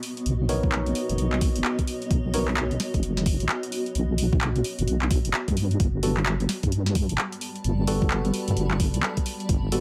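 A punchy, tape-tinged analog drum machine with snare, handclaps and hi-hat opens this sunny, soulful two-step UK garage excerpt alongside a bright, cloudy granular pad that pumps and blurs in its own reverb. It is soon joined by a deep, dark wobbling bass with chorus, then a hollow, mellow organ stab, treated with chorus, phaser and dub echo, that sounds from 0.5 to 2.5 seconds and returns at 6.0 seconds, and then an overdriven knocking electronic kick, while the harmony shifts from Bmaj9 to Gmaj9 in a lightly reverberant room.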